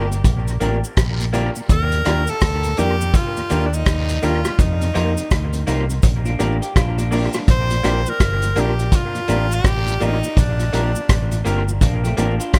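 Lovers rock reggae in Bb major at 83 BPM, this sweet, romantic cut from a longer piece sways on a swung sixteenth feel. An edgy, punchy tenor saxophone carries the melody with light vibrato and tape echo, sounding from the start until 11.5 seconds. Up front, a dark, foam-muted fingered bass with a round, amped tone sits beside a vintage drum kit of hi-hat, kick drum and rim click, its punchy kick and rolled-off top caught in a small, pumping room with dub echo. A slightly broken-up, compressed guitar through a small old amp plays stabs drenched in lush chorus and dub echo, while a second, brighter and twangy guitar adds picked arpeggios at 6.3 and 11.8 seconds. In the background, a clean tine electric piano with dub echo and a very quiet tonewheel organ with key click and slow rotary speaker fill out the harmony, and cabasa and guiro add close, soft percussion. The chords move from Bb6 through Ebmaj7 and F7sus4 before returning to Bb6, all within a small room ambience.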